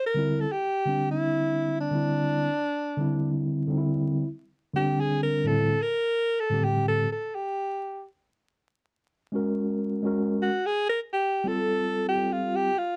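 A dark, vinyl-crackled production with moderate studio reverb frames this cool, nocturnal hip hop excerpt in D minor at 85 BPM with a swung 16th-note feel, where a breathy, clear alto saxophone with light vibrato and a soft attack plays a jazz-style solo up front over a mellow, clean tine electric piano heard through its built-in speakers, the chords moving from Dsus2 through Am7 and G#9sus4 to Fadd9.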